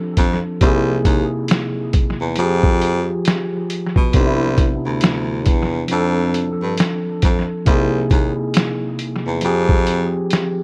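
A 16th-note swing in 4/4 drives this dreamy, nostalgic lo-fi hip hop excerpt, carried by a pitched-down, muffled sampler-style drum kit whose thumpy kick, medium-tuned snare and hi-hat are compressed, overdriven and touched with analog delay. A worn, slightly out-of-tune tine electric piano, filtered and echoing through analog delay, moves through F6, altered C7, F minor add9 and Cmaj9 voicings from the first moment until 10.6 seconds. Meanwhile a clear baritone saxophone with light vibrato and a smooth top holds down the low end in a jazz style from 0.2 to 10.2 seconds, all inside an echo-heavy mix with light reverb and digital ambience.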